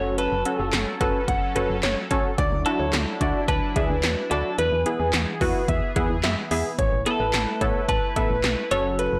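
Synth-pop with a cool, nocturnal mood, cut from a longer piece, where a clean, warm twelve-string electric guitar carries the melody through digital delay over a funky, detuned polysynth comp with chorus, a resonant, evolving pad, a round, dark FM bass and a clear concert grand piano second line entering at 0.2 seconds alongside punchy 80s electronic drums with gated snare, metallic hats and handclaps, all set in a moderate plate reverb within a blown-out, overdriven mix.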